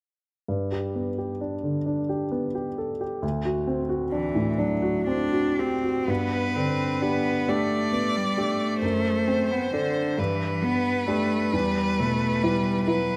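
Swaying in a flexible, rubato 6/8, this tender, serene slow romantic movement for piano trio opens at 0.5 seconds with a warm, natural baby grand piano laying down the accompaniment. A rich, close cello joins at 4.1 seconds with a smooth, even bowed second line shaded by vibrato, and at 6.1 seconds a distant-sounding violin takes the melody, its single bowed voice singing with vibrato. Close, detailed microphones and light reverb keep the trio intimate in this passage cut from a longer piece.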